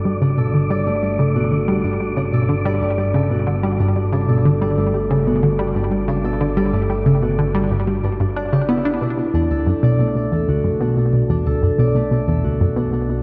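A straight 4/4 pulse at 92 BPM drives this cosmic, luminous slice of ambient, sequencer-driven space music, which moves from G to B minor at 9.0 s. Up front, a tight, detuned sawtooth synth riff with a fast attack, filter pluck, chorus and delay sits beside a ringing, thumb-plucked concert harp playing arpeggios through delay. Beneath them, an evolving, resonant analog drone with pulse-width modulation and chorus holds the bass, while an airy, breathy wind-like noise layer drifts until 9.0 s, the whole dreamy mix soaked in a lush 2.6-second hall reverb.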